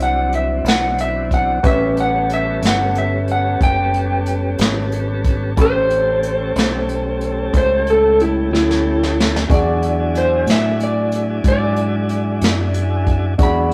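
A dark, slightly broken-up electric slide guitar solo leads this swaggering, gritty slow blues at 61 BPM in 12/8, set in A mixolydian over a vintage brush kit with a punchy kick and rolled-off top, and a round, up-front fingered electric bass. A smooth tonewheel organ holds sustained chords with key click and a slow rotary speaker, while a clear, woody upright piano sits in the background as the harmony moves from D9 to A9 and, after a drum fill from 8.5 to 9.5 seconds, to E9. Light reverb and a rough rehearsal-room sound give this short excerpt from a longer piece its loose, lived-in character.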